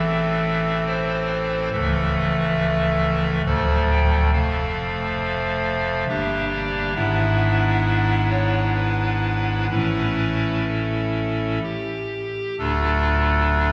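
A hollow clarinet stop on the pipe organ, with a baroque voicing, a touch of chiff and a tremulant, sits up front and plays alone through this dark, solemn excerpt of a classical chorale-style piece in D minor and 3/4, moving with rubato at around 62-72 BPM over chords that travel from Am through Dm, Gm and E7/G# to a resolving Dm at 12.6 seconds, all bathed in the long, wet reverb of a church.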